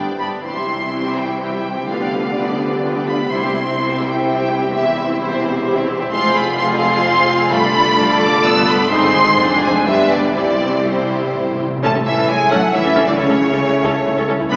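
Dramatic and stormy, this fast romantic symphonic passage in 3/4 and C major moves with a rubato feel between 119 and 138 BPM, cut from a longer piece and bathed in a wet church reverb with a small-speaker sound. A lush, up-front violin section carries the melody with focused vibrato over a second violin line, smooth violas, rich cellos, clear double basses and ringing, fingerpicked harp arpeggios, while a mellow French horn section holds sustained chords from 0.4 s. Round, soft-mallet timpani enter at 7.5 s and return with a fill at 10.3 s, before the harmony turns toward A major at 11.8 s.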